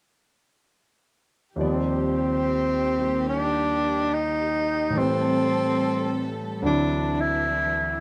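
Swung eighth notes at a slow 71 BPM in 4/4 carry this intimate, romantic jazz ballad in Eb major, cut from a longer piece, with all three parts entering together at 1.6 s. A breathy tenor saxophone sings the melody up front with subtone, vibrato and scooped notes, while a concert grand piano with deep bass accompanies and a bowed studio string section holds soft, sul tasto chords beneath. The harmony moves from Ebmaj7 to Am7 at 5.0 s and D9 at 6.6 s, captured by close, detailed microphones in light reverb.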